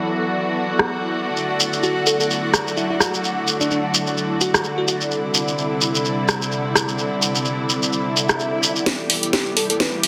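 Bouncy and aggressive, this bass house excerpt moves at 128 BPM in E minor with a swung sixteenth-note feel, cut from a longer piece. Muted, con sordino strings hold veiled sustained chords under a vintage 12-bit sampler grit and a low-pass filter that sweeps across the passage, while an airy, breathy pad with chorus and phaser adds a bright, detuned shimmer from the first moment. The house drum kit arrives at 0.8 seconds, up front and tape-toned, with hi-hat, rim click and a cracking, softly clipped snare, joined by a grainy, mellow shekere close to the ear. A sparkling, bell-like FM electric piano carries the melody in short phrases, its fast-attack, decaying notes coloured by chorus, phaser and digital delay. The harmony moves from Bsus4 through D and Cadd9, and near the end a swell rises into a drum fill and build-up as the music lands on Em, with a background riser sitting in a lush hall reverb and a dense, heavily limited master.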